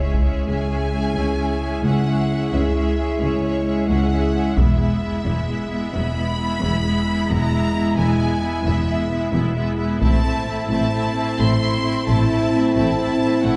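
A huge, bright sub drop opens this epic, heroic orchestral film-score excerpt at 88 BPM in 12/8, as lush bowed strings and mellow French horns sound together in a wet scoring-stage reverb heard from further back in the room: a focused high violin section carries the vibrato-laden melody over a smooth second violin line and distant violas, horns hold sustained chords, clear double basses and very quiet, close cellos anchor the bass, and hard-stick taiko hits land at 0.1, 4.6 and 10.0 seconds as the harmony moves from C#m to E to Am.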